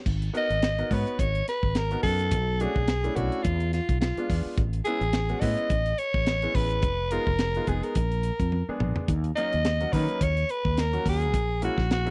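A dry, close 1970s-style studio sound frames this intense, nocturnal electric jazz fusion with a swung sixteenth feel, where a raspy, growling soprano saxophone with light vibrato leads up front over a round, dark fretless electric bass treated with analog chorus, a muffled, gritty funk drum kit with a high-tuned snare and a fill at 8.5 seconds, and a warm, polished grand piano in accompaniment moving through extended jazz chords.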